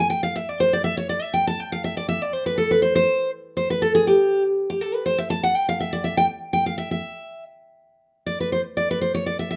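A bright, full-bodied jumbo steel-string acoustic guitar, picked and placed up front, carries this virtuosic, joyful bluegrass solo from start to finish, its lightly swung eighths in 4/4 staying between G4 and A5. The short passage, cut from a longer piece, plays one phrase and then begins it again at 7.5 seconds, with a moderate studio reverb around the guitar.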